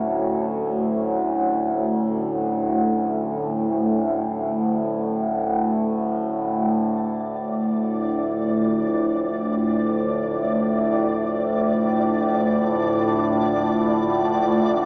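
Ominous and desolate, this free-time dark ambient drone fragment sets a resonant, overtone-sweeping sawtooth drone up front, thick with chorus and phaser, beneath a deep, detuned analog pad holding sustained chords that shift from F#m to Dm at 6.7 seconds, while a grainy, flickering texture joins at 7.4 seconds, all bathed in a wet spring reverb with a small-speaker character.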